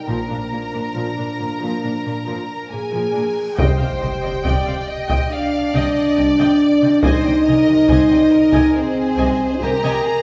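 A straight 4/4 pulse drives this relentless, heroic stretch of cinematic, epic orchestral film score, where lush bowed violins with vibrato carry the melody over a brighter, intense second violin line, rich violas, focused cellos and smooth double basses, while an up-front, mellow French horn section holds sustained chords. A build-up closes with a huge but faint reverse cymbal and sub drop at 3.3 seconds. Then, at 3.6 seconds, compressed, saturated taiko drums struck with hard sticks enter together with a very quiet timpani to open the second section, the whole ensemble set in a wet hall reverb.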